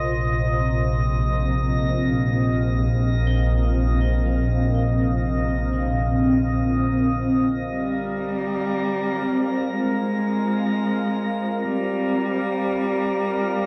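Serene and reflective, this ambient passage in free time is cut from a longer piece and unfolds in a dark, enveloping hall with a long reverb tail. A shimmering pad with chorus, phaser and its own reverb holds sustained chords throughout, while a glassy texture of drifting overtones floats high above it with chorus and reverb. Beneath them, a bowed double bass section with vibrato sits up front on a low Bb1, joined by a very quiet analog drone on C3, both stopping before 8 seconds. A very quiet, twangy twelve-string electric guitar picks clean arpeggios until 9.2 s. At 7.7 s the harmony moves from Bbsus4 to Csus2 as an expressive cello enters, playing a narrow melody between G3 and Ab3 with vibrato, portamento and tape echo.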